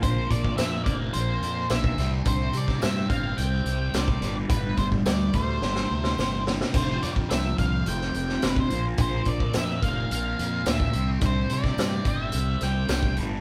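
A raw, lightly reverberant sound of a band playing live in one room opens this kaleidoscopic, trippy psychedelic rock excerpt, with a gritty, saturated garage drum kit and a fuzzed-out, overdriven fingered bass sitting up front. A bright, double-tracked fuzz guitar carries the riff through a phaser while a dark octave-fuzz lead guitar plays the melody above it, over very quiet sustained chords from a buzzy vintage combo organ with heavy vibrato. A distant, jingly tambourine joins at 0.6 s, and the drums break into a fill at 5.6 s as the suspended and add9 chords cycle around.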